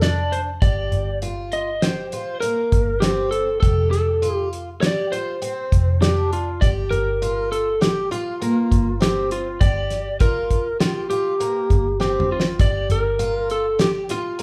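Heard as a band playing live in one room with a moderate large studio reverb, this driving, tense progressive instrumental excerpt in 5/4 at 100 BPM in G minor puts an up-front, slightly broken-up, compressed lead guitar on the melody over shimmering, octave-doubled arpeggios from a picked twelve-string acoustic guitar with fresh strings, a dark, round, foam-muted vintage electric bass, and a dry, damped 70s drum kit with a fat snare and tight kick that plays a fill from 12.0 to 12.6 seconds, as the chords move from Gm7 to F and back to Gm7.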